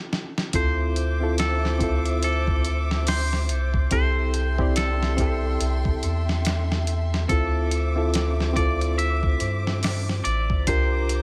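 In this hypnotic, melancholic trip hop excerpt at a swung 71 BPM in D minor, a reedy, worn electric piano with harmonic tremolo and tape echo opens alongside a gritty, compressed sampler-style drum kit with a thumpy kick that plays a short fill. A deep, round dub sub bass then settles in up front, together with a dark, woody violin section holding bowed chords over a Dm7, Am7/C, Dm9 and C9sus4 progression. A bright, twangy electric guitar melody enters at 0.6 s with its own tape echo.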